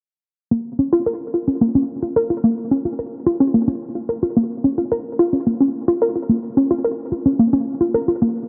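Eerie and melancholic, this short IDM fragment in a straight 4/4 centres on a single warbly, dusty pluck playing arpeggios from 0.5 to 8.3 seconds, detuned and lo-fi with a mellow, decaying tone that sits up front. Its sound is coloured by chorus, cassette tape wear and digital delay, all set inside a huge ambient reverb with a long 6.3-second tail and a dulled top end that keeps the whole cut hazy.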